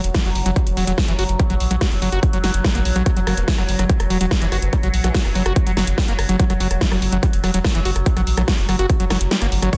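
A dense, heavily limited modern master with light digital ambience carries this hypnotic, driving psychedelic trance cut at 144 BPM in 4/4, built on a punchy electronic kick, a big-room dance kit with a huge snare, metallic hats, rim clicks and crashes, and a round, deep analog bass. A squelchy, screaming acid riff with distortion, chorus, dub echo and sidechain pumping cuts through over a resonant, slow-attack drone of moving overtones colored by phaser and reverb, while a detuned, formant-filtered wobble bass sits in the background between 3.3 and 5.5 s. The kick drops out at 9.3 s, and at 9.7 s a punchy supersaw stab lands with a very quiet electronic impact.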